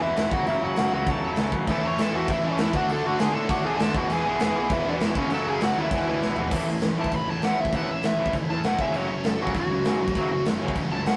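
A fast, straight punk rock pulse drives this rowdy, energetic excerpt. A big rock drum kit sits up front with a punchy kick, a medium-tuned snare, toms and bright crash cymbals ringing in a large room, and a drum fill at 6.2 seconds launches the second half. Behind it, two bright, picked electric guitars, one distorted and one overdriven, churn out riffs in the low and middle registers, and a double-tracked, tight distorted guitar joins them at 1.7 seconds. A growly fuzz bass, picked and overdriven, rumbles underneath in the background. Out front, a smooth overdriven lead guitar carries the melody and breaks into a solo from 6.5 seconds over a chord progression built around F#m, A, D and E. The sound is a rough rehearsal-room recording with warm saturation and moderate studio reverb.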